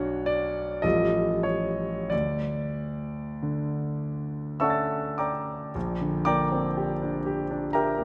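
A clear, intimate grand piano sits up front in this hazy, serene fragment of a longer impressionist solo piece, moving freely in a rubato 3/4 across a span from A1 to A6 through colors like Bmadd9, Aaug7 and Dmaj7, then shifting to a new section on Bb69 at 5.8 seconds, its natural tone and audible action noise framed by a wet concert hall reverb.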